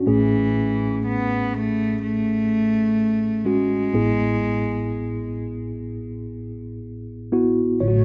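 A rough home-demo mix set in a wet small room opens on a mellow tine electric piano, clean and up front with plate reverb, laying down gentle accompaniment in this hopeful, heartfelt pop ballad fragment. A single bowed cello carries the melody from 0.1 s, its nasal, gut-string tone and airy bow given plate reverb and tape echo, as the harmony moves from Amaj7 to E/A. At 7.8 s a soft, detuned sawtooth pad with chorus slips in behind them just before the cut.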